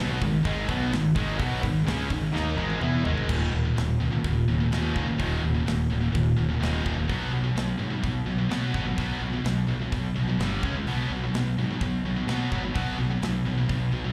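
Heavy metal in Eb minor at 127 BPM, this dark, epic passage is cut from a longer piece and captured as a live gig heard through the venue's PA, with light club reverb. Two high-gain guitars drive the riff throughout, one bright and up front, the other scooped and set in the background. A double-tracked distorted guitar with slapback echo joins them only for the opening 3.3 seconds. A fuzzy, overdriven fingered bass sits up front beneath them, while a tight, polished acoustic kit in a big, airy room adds bright cymbals, a medium-tuned snare and a tight kick. A drum fill from 2.3 to 3.3 seconds leads into the second section, where the power chords move through Eb5, B5, G5 and Db5.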